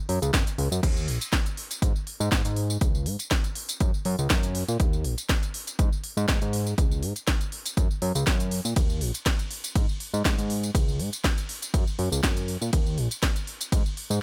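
Filtered disco house with a sunny, joyful mood and a light swing, taken from a longer piece. A fat, nasal analog bass with a saturated sawtooth edge pumps under sidechain compression from the start, while a house drum kit adds a cracking snare, crisp hats, ride, crash and tambourine in studio reverb. A punchy, overdriven electronic kick sits up front from 0.3 seconds to 13.8 seconds, all set in a digital ambience.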